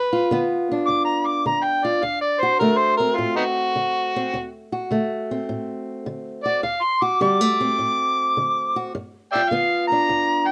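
Acoustic country blues with a swaggering, soulful mood, moving at 104 BPM in a swung 4/4 over a G7 chord that shifts to D7 at 2.0 seconds and returns to G7 at 8.9 seconds. An amplified, overdriven harmonica takes a gritty, jazz-style solo up front, full of tongue slaps, scooped notes and light vibrato. Alongside it, also up front, a fingerpicked old ladder-braced acoustic guitar with old strings gives dark, woody, boxy accompaniment, all in light reverb.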